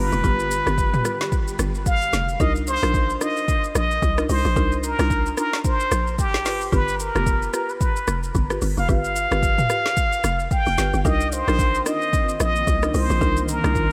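Lightly reverberant with a faint mains hum, this soulful, late-night amapiano excerpt in C minor moves at 111 BPM with swung sixteenths over G7 and Cm11, led up front by a brilliant plunger-muted jazz trumpet solo full of wah-wah, vibrato and scooped notes washed in tape echo, backed by a hollow, bouncy log drum bass, a deep house kit with a deep kick, woody snare and smooth hats, and buzzing hardwood marimba stabs also sent through tape echo, while a blurred granular cloud pad drifts in the background until 2.4 seconds and returns at 11.8 seconds.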